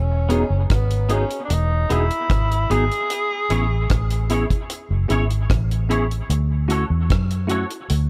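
A tenor saxophone and a vintage, foam-muted fingered electric bass open this sweet, smooth lovers rock reggae excerpt in E major, moving at 75 BPM in a straight 4/4. The saxophone carries the melody with a warm, vintage pop-style vibrato and a touch of tape echo, singing as the lead until it drops out at 4.3 seconds. The round, punchy bass sits up front, and from 0.3 seconds a dry, dark acoustic drum kit joins with a tight kick, hi-hat and rim click. A bell-like, bright electric piano heard through its built-in speakers supplies the accompaniment, while a clean, compressed, twangy electric guitar adds quieter fingered stabs colored by ensemble chorus and tape echo. The harmony drifts from Emaj7 to Amaj7 to Dmaj7 inside a small room ambience, and the bass and drums carry on until 8.1 seconds, where this fragment of a longer piece is cut off.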